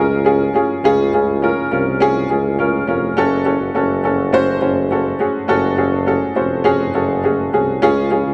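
A straight 4/4 pulse at 103 BPM carries this hopeful piano-driven pop fragment, cut from a longer piece, moving from Db to Gbm at 3.2 s and back to Db at 7.8 s. A clear, woody upright piano sits up front with a slightly detuned, worn character and short sustain, playing accompaniment from Db3 to C5, while a punchy, roomy tuba with vibrato supplies a distant bass line between F1 and Db2. Light reverb and a dark, warm production with its top end rolled off give the short passage a warm, hopeful feel.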